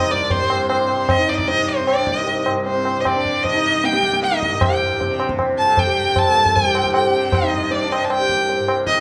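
Heard in a moderate recital hall with a 1.8-second reverb tail, this 9-second cut from a longer Hindustani classical performance in raga Shivaranjani on C has a meditative, solemn air at 154 BPM in straight 4/4. A single bowed violin carries the melody up front, its tone smooth and even with vibrato yet distant, sitting between C5 and A5. Beneath it, a hand-pumped harmonium plays a second line from C4 to A4, reedy and breathing, with a boxy small-room character and tape echo. A softly plucked acoustic tanpura holds a warm, buzzing, shimmering drone from C2 to C3. The low-tuned tabla, with a short ring and a small-room sound, enters at 0.1 seconds and provides the percussion.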